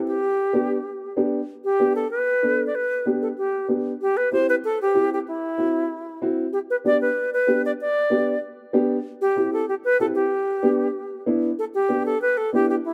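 A bright, reedy alto flute carries the melody from 0.1 seconds, sitting up front with an airy tone, tongued notes and a touch of vibrato. This is a sunny, festive Latin piece in G major, moving at a brisk 190 BPM in a straight 4/4 feel. Beneath it, a dark upright piano plays accompaniment, its mellow, woody and slightly boxy sound also placed up front. The harmony moves between G and C, and a new passage arrives at 11.6 seconds before the music breaks off, since it is cut from a longer piece. Light reverb gives the pair a gentle sense of space.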